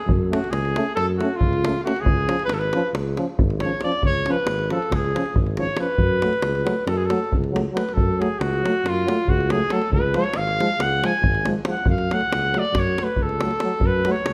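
A warm, distant trumpet carries a restless, bittersweet solo melody up front in this Balkan brass band excerpt in F# harmonic minor, moving in 9/8 at 275 BPM in eighths over a deep, close, dry davul, a mellow tuba bass with light vibrato, and two euphoniums, one clear and soft-attacked and one mellow, sitting in the background as accompaniment, all within a light reverb as the chords shift between F#m and C#.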